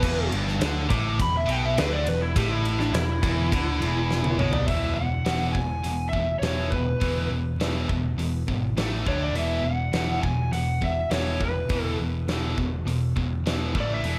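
A straight, swaggering 4/4 hard rock groove from a longer piece, where a huge arena drum kit with a fat snare and punchy kick drives a growly overdriven picked bass and two riffing guitars, one a cranked stack tone and one a scooped high-gain distorted sound, while the lead guitar through a small cranked amp, with overdrive and tape echo, takes an energetic solo until 4.7 seconds, where a drum fill starting at 4.1 seconds leads into the next section, all set in light reverb and small room ambience with a prominent layer of vinyl crackle.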